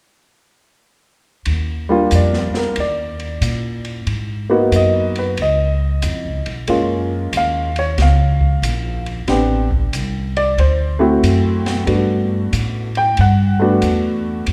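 A light reverb wraps this relaxed, playful jazz piano trio, a short passage cut from a longer piece, swinging in 4/4 at 92 BPM with tuning at A4 = 442 Hz. A woody, growly upright bass sits up front, entering alongside the drum kit at 1.5 s, the kit heard in a small room with dark cymbals, a high-tuned snare and a boomy kick across hi-hat, ride, snare and kick. From 1.9 s a present, warm baby grand carries the melody over lush chords that drift from Ebmaj9 through Abm9 and Gbmaj9 to settle on Gmaj9.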